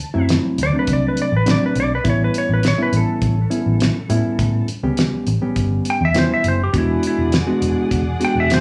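Swaggering and gritty, this straight-eighth soul blues excerpt rolls along at 102 BPM in A mixolydian, with a clean, compressed lap steel guitar up front playing a slide solo through analog delay from the start, its dark tone marked by volume swells. Beneath it, a foam-muted vintage fingered bass gives a round, amped low end, a reedy electric piano comps brightly through its built-in speakers, and a cloth-damped drum kit offers a fat snare, tight kick and rolled-off top over chords moving from D9 to A9 to E9. At 6.7 seconds a veiled, con sordino string section enters softly with bowed vibrato, all set in a moderate club reverb.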